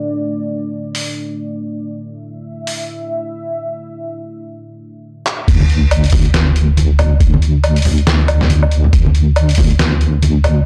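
Meditative and brooding, this deep dubstep excerpt moves at 139 BPM in 4/4 with a half-time feel and a swung sixteenth-note lilt. It opens on a dark analog pad holding sustained chords up front, its detuned sawtooth and triangle tones thickened by a sub octave and chorus while a filter sweep runs across it. Gritty, pitched-down trip hop drums enter at 0.9 seconds, sampler-style and compressed, with a medium-tuned snare, handclaps, hi-hat, woodblock and crash cymbal, all re-recorded in a large room. A drum fill at 5.3 seconds leads into the drop at 5.5 seconds, where the pad stops and a deep, soft wobble bass takes over on D2, detuned and chorused. A thumpy electronic kick and an electronic sub drop arrive with it, and ringing acoustic congas sit close yet in the background. The sound is dry and hardware-driven, carrying transformer saturation and the grain of cassette tape.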